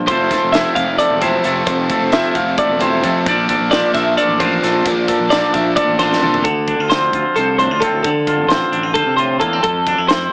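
Intricate and playful, this short cut of math rock and midwest emo races along at 264 BPM in eighths in 7/8, with a twangy, scooped electric guitar accompanying a bright, compressed twelve-string electric guitar that spins arpeggios, both up front over a fuzzy, punchy fingered bass. A double-tracked overdriven electric guitar riff drives the opening until 6.4 seconds, where a drum fill from the crisp fusion kit, with its high-tuned snare and tight kick, leads into a new section. The harmony moves from Fmaj7 to Bbmaj7 and back, all set in moderate studio reverb with a small speaker sound.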